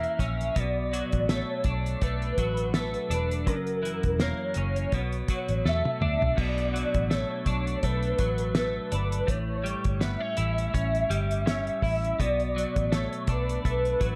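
Wistful and hazy, this 82 BPM indie bedroom-pop excerpt in B minor with a light 16th-note swing sets a velvety sawtooth synth lead, treated with ensemble chorus, tape echo and vibrato, over a clean, compressed twelve-string electric guitar carrying analog chorus and warbly pitch drift, a round, foam-muted vintage fingered bass, and an up-front, cloth-damped drum kit with a fat snare and dark cymbals that plays a fill from 5.6 to 6.4 seconds before the opening passage comes around again, the whole mix sitting in light reverb.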